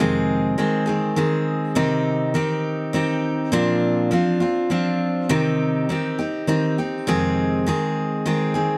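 A picked steel-string acoustic guitar, full-bodied and up front with a jumbo-sized voice, plays alone through this reflective, dusty rock excerpt in C minor at 102 BPM in 3/4, moving from Fm7 through Cm and Bbadd9 back to Fm7 within light reverb and a dark production over its 8.8 seconds.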